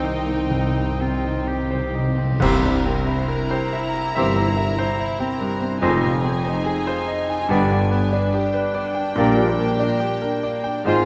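A clear, up-front concert grand piano carries the melody with a rich, bowed violin section in this tragic, brooding romantic passage for piano and orchestra, cut from a longer piece with a flexible rubato feel, while a very quiet clarinet, a distant oboe, a hollow silver flute and a second, floating violin section weave background lines over bassoon and soft-attack viola accompaniment, smooth-topped French horns hold chords, and cellos, tuba and double basses anchor the bass; hard-mallet timpani open with a fill and sound until 3.7 s, and at 2.4 s an accent brings in mellow trombones, trumpet stabs and a burst of dark clash cymbals with concert bass drum, within a moderate scoring-stage reverb.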